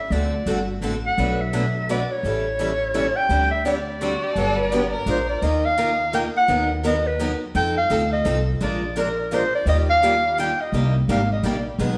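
A soft-attack, vibrato-rich clarinet opens this lively, swinging jazz manouche at 170 BPM in 3/4, sitting up front over two boxy picked parlour guitars, one woody with old strings and the other bright with fresh strings, and a thumpy, dark pizzicato upright bass on gut strings, while a single bowed violin adds a smooth, expressive second line with portamento from 4.0 to 5.4 s before the tune settles into Eb major, the band playing live together in one room bathed in wet large-studio reverb.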